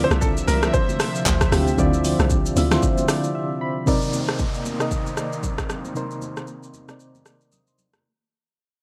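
A swung 115 BPM amapiano groove in 4/4 drives this hypnotic, late-night excerpt, where an up-front deep house kit with a deep kick and fat snare, distant high-tuned congas and a hollow, bouncy log drum bass that stops at 2.8 seconds support soft, round electric-piano-like synth keys and a smooth detuned analog pad with chorus, tremolo and sidechain pumping, while a brilliant, worn grand piano with analog delay plays a brief melody before a break at 3.3 seconds, after which the chords move from Dm9 to Cm9 and an electronic downlifter enters at 3.9 seconds under a filter sweep and fade-out in a dry, gritty digital ambience.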